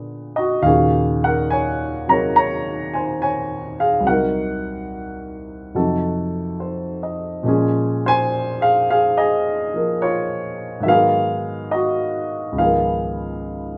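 A slow 70 BPM swung ballad pulse in 4/4 carries this melancholic, wistful jazz excerpt in Bb minor, where a dark, mellow baby grand piano plays alone and up front from C2 to Bb5 through chords such as Bb7b9, Ebm7, Cm7b5 and F7b9, its natural tone set in a wet studio reverb heard from further back in the room, with the top end softly rolled off.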